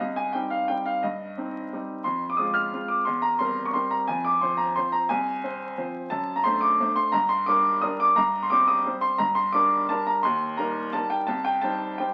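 A clear, woody upright piano sits up front with long sustain, playing a wistful, bittersweet classical waltz alone in 3/4 with uneven, rubato beats, its open tone ringing through a stone room's reverb and the crackle of a very old 78 rpm record across this brief fragment of a longer piece.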